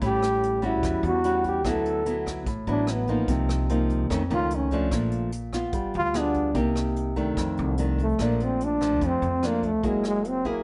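Bossa nova with a sunny, romantic mood, moving at 147 BPM in a straight 4/4, cut from a longer piece. A breathy trombone carries the melody up front from 0.1 seconds, close-miked with a soft attack and light vibrato, playing a jazz-style solo through the first section until 8.2 seconds. Beneath it, a dark, fingerpicked nylon-string guitar sits close in the mix, while a woody, thumpy upright bass played pizzicato anchors the low end. A jazz brush drum kit in a small room keeps time on hi-hat, rim click and a boomy kick. The harmony passes through chords such as D69, Faug7 and G7b9 before settling on Bbmaj7 and Gb9 in the closing section, all bathed in light reverb with a soft, rounded top end.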